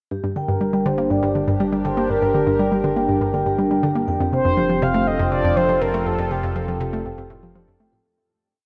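A straight 4/4 pulse at 121 BPM drives this hypnotic, mysterious piece of ambient, sequencer-driven space music in G minor. An up-front, bouncy square pluck repeats an 8-step riff with chorus and delay, while a vibraphone played with soft mallets rings through a 3-step arpeggio loop that drifts against the bar. A sweeping, full-bodied resonant pad holds slowly shifting Gm and F chords, and a fat, saturated analog bass fades in on a sustained root. A round, horn-like synth lead enters at 0.4 s with motif-based call phrases, and the piece sits in a vast, echoing cathedral reverb until a fade-out from 5.4 s.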